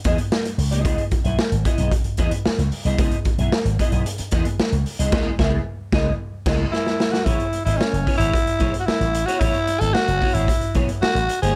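Lightly reverberant and cut from a longer piece, this sly, driving funk groove at 112 BPM rides a gritty, boomy garage drum kit with dark cymbals, a punchy slap bass through an envelope filter, and a bright, twangy clean electric guitar with ensemble chorus over C#m9, until a band accent and drum fill bring in a raspy, growling tenor saxophone solo up front at 6.7 seconds, which carries on as the harmony shifts to Amaj9 at 7.3 seconds.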